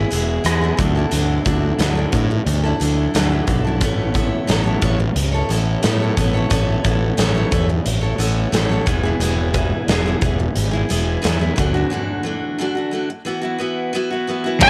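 Quiet-loud alternative rock with a restless, anthemic mood, where a bright, up-front picked steel-string acoustic guitar plays arpeggios over a growly overdriven fuzz bass and a huge arena drum kit with a pumping room, punchy kick and cassette-tape grit, moving through a break from 11.9 s until, at 14.6 s, a dark octave-fuzz lead guitar melody and two distorted background fuzz guitars playing a riff, one thick, arrive just as this home cassette recording cuts off.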